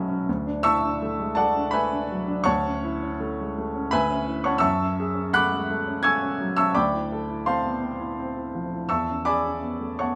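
A clear, open baby grand piano sits up front in a moderate large-studio reverb, giving this brief passage from a longer impressionist solo piano piece a hazy, dreamy air. At 84 BPM in 3/4 with a rubato feel, the piano spans B1 to G#6 and drifts through lush extended harmonies, moving from Dadd9 and A6/D through Dmaj9 and F#m9 to Dm9 before settling on E13 at 8.9 seconds.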